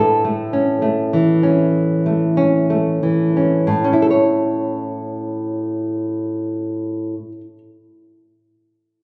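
Tender and sunny, this brief cut from a longer romantic piece for solo classical guitar drifts in a rubato 6/8 at 29-35 BPM (dotted quarters) in A major, its thumb-plucked nylon strings sitting up front with a warm tone and audible finger squeak as the playing slows through the opening 3.7 seconds before moving into a contrasting second section, captured on a phone in a club-like room with light reverb and compression.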